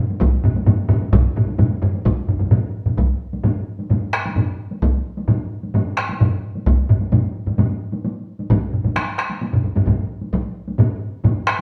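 Taiko drums struck with heavy sticks open this driving, ceremonial excerpt of Japanese traditional ensemble drumming at 130 BPM in a straight 4/4, soon joined by three more taiko parts: a second heavy-stick group up front that drops out at 10.4 s, a hard-stick group set close in the background, and a close, dry hard-stick group up front, all playing live together in a stone room with a reverberant 0.9-second tail as the music moves into a new section at 3.0 s.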